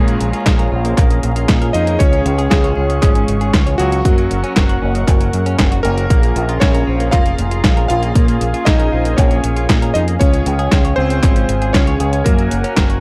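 A punchy, bright fingered electric bass with an envelope filter and tube saturation sits up front in this melodramatic, danceable Italo disco cut from a longer piece, driven by a layered electronic kick and a detuned 8-bit drum machine playing tape-toned handclaps, hi-hat and snare. A clear, vintage electric grand piano with analog delay carries the melody over Bbm7, Db and Gb chords, while a clean, picked electric guitar plays arpeggios through spring reverb and delay. Round, brassy synth stabs and a smooth, warbling analog pad with chorus fill the background, a barely audible downlifter sounds in the first 2 seconds, and the whole piece has a dry, gritty hardware character with vinyl crackle.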